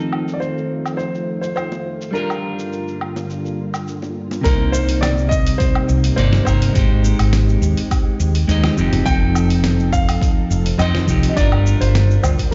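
Sunset chillout in C minor at 104 BPM, smooth and wistful, this excerpt opens with an up-front clean electric guitar carrying a vintage 12-bit sampler grit, a silky string machine in the background with a filter sweep and ensemble chorus, and a dusty soul sampler-style kit whose fat snare, hi-hat, shaker and woodblock sit behind low-pass filtering. From 0.3 s a dark, intimate baby grand piano takes the melody with audible action noise and delay, and from 1.7 s very quiet, low-tuned bongos add close, dry hand percussion. At 4.4 s a hollow-bodied, round fretless electric bass and a deep, overdriven electronic kick enter under Cm7, Abmaj7, F7 and Gm7 chords, all bathed in a large studio reverb and capped below 7.6 kHz.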